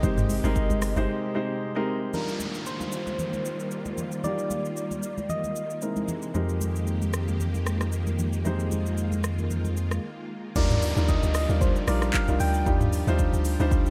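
A deep, dark log drum bass with a fast, decaying attack opens this relaxed amapiano excerpt at 114 BPM in Eb major, dropping out after the first second and returning at 10.6 seconds. An up-front baby grand piano plays accompaniment throughout, while a vintage string machine voicing violas holds bright, slow-blooming chords with ensemble chorus, and a gentle, keys-like FM synth lead carries the melody with chorus, delay and vibrato. The produced afro-pop kit sits forward, with its kick and crisp hats joined by handclaps, rim clicks, shaker, toms and crash, swung on the sixteenths. Close, dry congas with a thin skin sit in the background until 10.0 seconds. An electronic downlifter enters at 2.1 seconds and returns at 10.6 seconds, and from 6.3 seconds a mellow analog bass blending sawtooth, sine and triangle tones takes over the low end on F2. The harmony moves through lush ninth and eleventh chords with an altered dominant for tension, set in digital ambience.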